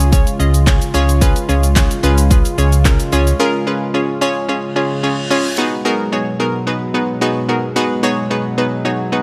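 Light reverb and a digital ambience frame this carefree, upbeat dance-pop passage, where a bright, bouncy square-wave pluck with a filter sweep and a mellow, detuned sawtooth pad, both with chorus and sidechain pumping, carry the chords throughout. A round, dark hollow-body electric bass and a deep house kit with a deep kick, fat snare, dark hats, handclaps and shaker sit up front until the bass drops out at 3.3 s and the drums at 3.4 s. An electronic reverse cymbal rises at 4.7 s into a new section at 5.6 s, where the harmony shifts to a minor seventh chord.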